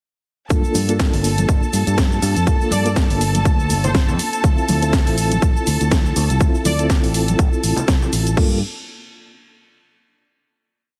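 A punchy, up-front four-on-the-floor electronic kick, overdriven and re-recorded in a large room, drives this funky, sensual filtered disco house piece at 122 BPM in G dorian, joined by a house kit with a cracking snare, programmed hats, cabasa and crash, plus very quiet, band-limited shaker and congas. A fingered electric bass plays a syncopated line under reedy electric piano chords with fast tremolo and phaser, while a lush, distant string section holds high notes over Gm9 and Dm7, with the bass, piano, strings and hats all pumping to the sidechain. From 2.7 to 6.9 seconds a fat, detuned analog synth brass adds short chorused phrases with delay in the background, and the piece carries a heavily compressed radio sound through to a final Gm9 chord at 8.4 seconds.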